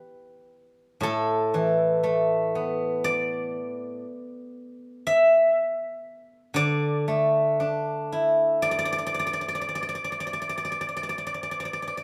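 A steel-string zither, played with fingerpicks and sitting up front, carries this short Chinese traditional solo from 0.0 to 12.0 seconds, its silvery, ringing tone spanning from low A2 to high E5. The mood is flowing and pastoral, with a free, rubato feel. Moderate studio reverb gives the live room performance a gentle sense of space, and the passage is cut from a longer piece.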